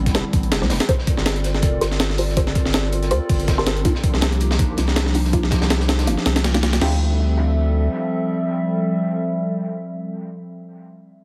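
Heavily compressed, radio-like sound with light reverb frames this nostalgic, frenetic drum and bass and jungle excerpt in D minor at 162 BPM, where a thumpy, sampler-style breakbeat kit with a high-tuned snare sits up front over a crunchy, rolled-off second breakbeat kit in the background, a deep, thick saturated sub bass holds the low end until 7.9 seconds, a warbling lo-fi pad with chorus and 12-bit grit carries sustained minor-eleventh chords, and a muted, detuned dub chord stab with phaser and dub echo gets a filter sweep before the drums drop out at 6.9 seconds.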